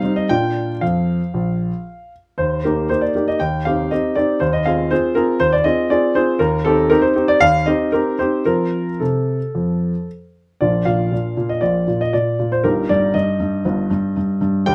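A flexible 4/4 pulse around 118 BPM moves with gentle rubato through this short cut from a longer classical-period piano sonatina, cheerful and graceful in mood. A solo grand piano carries everything, ranging from G1 up to G5, with a clear, intimate and natural tone placed up front, where the noise of its action is audible. The harmony moves from Bb through Eb and minor colours over an Eb bass before settling firmly in Bb major from 6.4 s, with an F chord leading home. At 10.6 s a new section begins on Bb and turns toward Eb over G. A light reverb gives the instrument a modest sense of space, and the tuning sits slightly below standard pitch, at A4 = 439 Hz.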